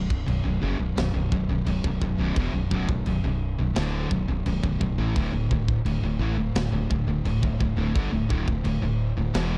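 In a straight four-beat metal groove, a tight drum kit of china cymbal, tight kick and medium-tuned snare drives this aggressive, epic heavy metal fragment. A bright, compressed distorted electric guitar up front and a double-tracked fuzz guitar further back grind out a low riff over a round, hollow fretless bass, moving from B minor to a D power chord at 5.2 seconds in a dark studio mix.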